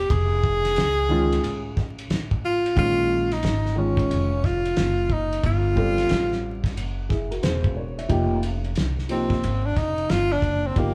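Vinyl crackle and a moderate large-studio reverb frame a band playing live in one room, giving this nocturnal, cool jazz-hop excerpt its swung hip hop feel. A breathy tenor saxophone sits up front with subtone, vibrato and scooped notes, over woody pizzicato upright bass and a cloth-damped, thuddy drum kit with dark cymbals, a fat snare and a tight kick. A dark, boxy concert grand piano, its action noise audible, enters at 1.1 s on chords moving from Faug through Bbm7 and E69, and the saxophone takes a solo from 8.1 s over F7sus2.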